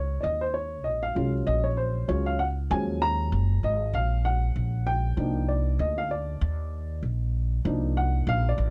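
A dark upright piano leads this short, nocturnal hip hop fragment, taking a solo across the full 8.7 seconds with a mellow, intimate tone, audible action noise and a short, vintage sustain. Beneath it, an upright bass plays pizzicato on steel strings with a woody, acoustic sound, sitting up front alongside the piano in the low register. The groove moves at 97 BPM in 4/4 with a relaxed swing on the sixteenths, giving the mellow mood an easy, late-night sway. The harmony rests on Ebm11 before shifting to Cm11 at 5.2 seconds, adding to the smooth, shadowy colour. Light reverb and a dark, warm production wrap the two instruments in a close, hushed space, and the passage is cut from a longer piece.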